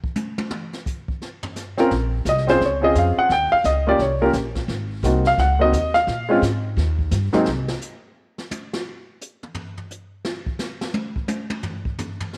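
Brushed drums open this playful, swinging jazz piano trio fragment, taken from a longer piece, with the kit playing alone in a natural small-room sound built on a medium-tuned snare, hi-hat, toms and a boomy kick. At 1.8 seconds the baby grand piano enters up front, warm and intimate with short sustain and audible action noise, carrying the melody across a span from Ab2 to G5. The upright bass arrives almost at once, its pizzicato gut strings woody, dark and thumpy as it moves through the low register beneath a Bbm7 to Eb7 to Ab7 turn that settles on Eb. Piano and bass drop out around 7.5 seconds, handing the remaining time to the drums, which carry on by themselves until the cut at 12.4 seconds. Light reverb and a small-room ambience keep the trio close and lively, with the drum kit sitting lower in the balance beneath the piano and bass.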